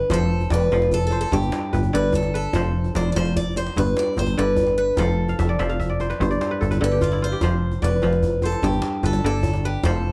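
A woody, boxy, picked old ladder-braced acoustic guitar carries the melody up front in this joyful, flowing West African traditional string and xylophone music at 98 BPM in 12/8, over mellow, ringing kora arpeggios that break into a fill from 5.3 to 7.4 seconds, a punchy, funky analog bass sitting low and up front, and a distant djembe with metal rattles, the harmony rocking between F and G in a close, detailed, dry recording cut from a longer piece.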